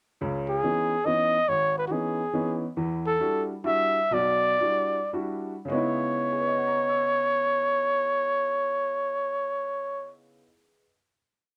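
Close, detailed microphones and a light reverb give this short jazz piece an intimate, present sound. A mellow trumpet carries the melody up front, singing motif-based phrases with vibrato and scooped notes, while a bright, woody upright piano accompanies with a stride bass and close voicings. In a swung 3/4 at 98 to 141 BPM and set in C# dorian, the mood feels searching and spiritual, moving from C#m9 to Em9 and back. The tempo slows between 2.8 and 5.7 seconds, leading into a closing C#m9 chord that rings on. The trumpet falls silent at 10.1 seconds, and the piano sustains alone until 11.2 seconds.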